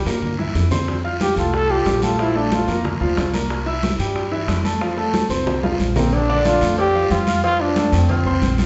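A straight, brisk 4/4 salsa groove at 183 BPM in F major opens with a drum fill, as soft-handed congas with a ringing, high-tuned tone and round low-tuned bongos and cowbell sit in the background, joined by a raspy guiro, beneath a woody, thumpy pizzicato upright bass on gut strings. An intimate, up-front grand piano with audible action noise carries the chords, while a present solo trombone with vibrato and scooped notes sings a joyful, sunny pop-style line from 1.2 s, returning at 6.0 s after a second fill as the harmony moves to Bbmaj7 and resolves to F. A wet recital-hall reverb and a soft, rolled-off top end give this short cut from a longer piece the feel of a church or concert hall.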